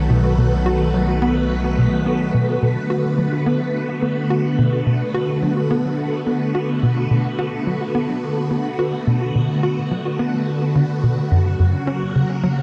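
A straight 4/4 pulse at 107 BPM drives this cosmic, expansive piece of ambient, sequencer-driven space music in B minor, cut from a longer piece. A tight, punchy sequencer bass riff with a sawtooth filter pluck runs throughout, dark and driving, touched with subtle chorus and analog delay. Up front, a swirling vintage string machine holds sustained chords through ensemble chorus and phaser, its slow attack and long release filling the space until 12.6 s. At the start, a round sine sub bass sits beneath, while a thumb-plucked concert harp rings out bright acoustic arpeggios in the background through analog delay until 4.6 s, and a bubbling, resonant stepped-filter texture lingers barely audible. The harmony moves from B7 to Bm7 at 2.3 s and then to F# near the close, and the mix sits in a huge ambient reverb with a dark, warm production.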